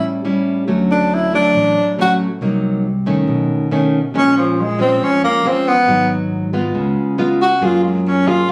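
Over a straight bossa nova groove, a relaxed, romantic passage cut from a longer piece sets a breathy, soft-attacked tenor saxophone solo with scooped subtone notes and plate reverb up front, beside a fingerpicked classical nylon-string guitar, while a direct, amped fingered electric bass joins at 0.7 seconds, all caught on a phone in a studio room with light reverb and a chord progression running from A7 to Gbmaj9.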